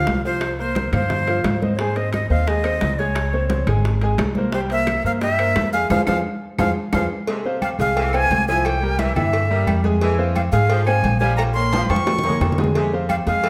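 A breathy, bright jazz flute with vibrato and a chiffy, reedy attack leads this passionate, danceable salsa excerpt in F minor at 175 BPM, sitting up front beside a dark, woody pizzicato upright bass. A brilliant, polished upright piano accompanies while ringing congas, tight high-tuned bongos and cowbell, metal-shell timbales with agogo bells, and very quiet claves fill the background, with a band accent from 5.9 s and drum fills along the way. At 7.3 s the harmony turns to F harmonic minor and a clear, punchy but distant saxophone section joins with a loose second line, heard through a large, wet studio reverb.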